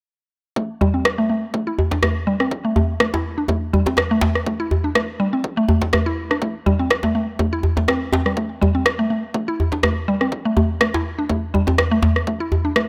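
A lightly swung groove drives this short cut from a longer afro house track, with a punchy, layered electronic kick arriving at 0.6 seconds and an overdriven electronic rim click following at 1.1 seconds. A tight, cracking djembe sits close and up front from 0.8 seconds, giving the pulse an acoustic edge against the produced drums, which carry the character of a small room. Over this, a mallet-like FM synth pluck plays arpeggios in a low-middle register, woody and nasal, with a fast attack, short decay and a noise layer. Chorus, digital delay and sidechain pumping shape the pluck, and a filter sweep runs across the arpeggio for the whole passage. A light reverb frames the mix, and the mood is spiritual and warm.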